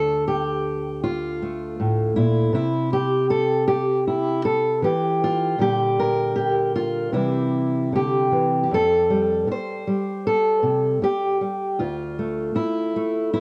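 Wistful and haunting, this folk passage is a short cut from a longer piece for solo fingerpicked steel-string acoustic guitar, played in 4/4 around 78 BPM with a loose, rubato feel. The dark, up-front guitar moves through Dm, C, Gm/Bb and C before turning at 8.7 seconds to Fadd9 and then Dmadd9. A wet spring reverb and the character of a home cassette recording give it an intimate quality.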